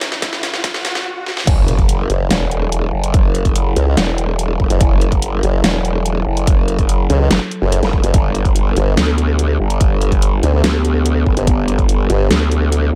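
Heavy and aggressive, this cut from a longer heavy wobble dubstep track moves at 144 BPM in a half-time 4/4 feel, rooted in F# phrygian. It opens with a brief build-up: a drum fill, a riser and a swell rise out of the background, a filter sweeps across the evolving, warbling wavetable pad, and a short stop at 1.1 seconds sets up the drop at 1.5 seconds. There an impact lands and the growl bass enters, saturated and bright, snarling up front with a formant-filtered wobble, joined at 2.1 seconds by a sawtooth formant-sweep wobble bass that sits even louder in the mix. Underneath, a punchy, layered electronic kick and a dubstep kit with a huge, up-front snare, hi-hats and crash drive the groove, while the full-bodied pad holds sustained chords in the background, pumping with sidechain compression, chorus and its own reverb. The harmony shifts from Dadd11/G to F#m7 at the drop and on to Gadd9 later, all within a dark, dry production.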